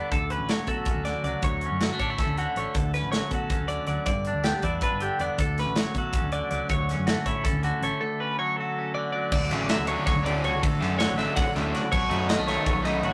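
Bright and wistful, this short math rock and midwest emo cut moves in an odd metre of seven, cycling through airy major-seventh and ninth chords before turning toward a B7 near the end. A twangy, up-front clean electric guitar carries the accompaniment while a compressed twelve-string electric guitar spins bright, clean arpeggios in a higher register above it. Underneath, a hollow-body short-scale bass played with the fingers adds a dark, round low end, and an acoustic drum kit with a tight kick, medium-tuned snare, hi-hat, ride and crash sits up front in a small-room sound. At 9.5 seconds a cranked, overdriven stack guitar, double-tracked, enters with a riff that thickens the second section. The whole take has the rough feel of a rehearsal-room recording, softened by a moderate reverb, and it is clipped from a longer piece.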